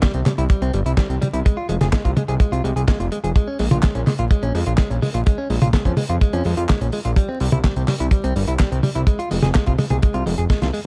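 Dark, warm production with vinyl crackle and light studio reverb frames this danceable, melodramatic italo disco cut in Bb minor at 126 BPM, where a dry, up-front damped 70s drum kit with fat snare, handclaps, hi-hat and toms plays alongside a tight kick, a thick, detuned sawtooth analog bass with a fast attack and filter sweep anchors the low end, and a bright, compressed, clean electric guitar picks arpeggios through tape echo before a drum fill at 10.5 seconds.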